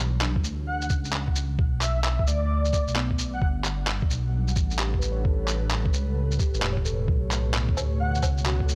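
A soft veil of light reverb and digital ambience frames this short, melancholic future garage excerpt in B minor at 131 BPM, its swung 16ths drifting through Bm9, Gmaj9 and A9 with a nocturnal hush. Up front, a deep, rumbling detuned saw bass pumps against a muffled, thumpy, pitched-down kick, while tape-softened handclaps, shaker and woodblock sit alongside, and muted felt-like synth keys carry 12-bit grit and tape echo in the background. A breathy, flute-like lead sings from 0.7 to 3.5 seconds and briefly returns near 8.0 seconds, and an ethereal, airy pad fades in at 4.3 seconds with a slow attack and a mellow chorused glow.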